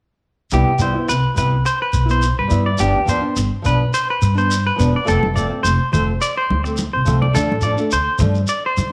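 Highlife guitar band in C major at 105 BPM with a lightly swung, carefree feel, where a bright, clean semi-hollow electric guitar plays up-front arpeggios with tremolo and slapback echo over a woody pizzicato upright bass, a small fingerpicked nylon-string guitar comping through Cmaj7, G7, F and Dm, and a grainy shekere, joined at 5.2 s by damped, thin-skinned congas in the background, all set in a moderate spring reverb.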